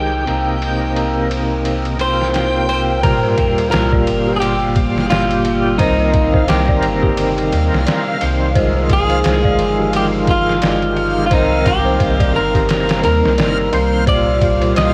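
Swung, pitched-down sampler drums with a thumpy kick, snare and ride enter at 0.3 seconds beneath a gritty overdriven tonewheel organ turning through a slow rotary speaker, a round dub sub bass, a warbling nostalgic pad and a reversed, dreamy swelling texture, before a dark, slightly broken-up electric guitar carries the melody from 2.0 seconds and an eerie detuned synth bell adds arpeggios alongside a background sub drop at 3.0 seconds, giving this hypnotic, cinematic trip hop passage a lo-fi cassette haze with vinyl crackle.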